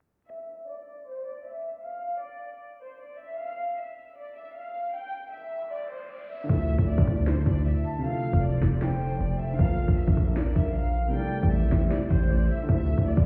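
A distorted, heavy 808-style bass and an up-front trap kit with hard-clipped kick, sharp snare and metallic hats arrive at 6.5 seconds in this dreamy, wistful half-time hip hop excerpt, after an intimate bowed violin section with light vibrato, a filter sweep and tape echo carries the melody from 0.3 seconds over a background riser and a smooth vintage grand piano slips in just before, at 6.4 seconds; an airy detuned chorused pad and a breathy jazz flute with tape echo then fill in, the whole mix heard muffled as if through a wall with stone-room reverb and vinyl crackle.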